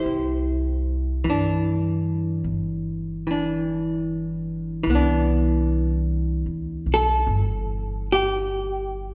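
A jazz ballad at a slow 50 BPM in 4/4, swung on the eighth notes and set in C major, with an intimate, romantic mood in this brief extract from a longer piece. A miked and amplified archtop guitar carries the accompaniment from the start, its clean, picked hollow-body tone dark and compressed, and it sits up front. An upright bass joins at 0.1 seconds, plucked pizzicato on steel strings with a woody, acoustic sound, also placed up front in the mix. The harmony rests on Cadd9 before moving to Cmaj9 at 4.9 seconds, where the passage shifts into a new section. The whole performance is bathed in a wet concert hall reverb with a 1.9-second decay, giving the duo the spacious resonance of a church or concert hall.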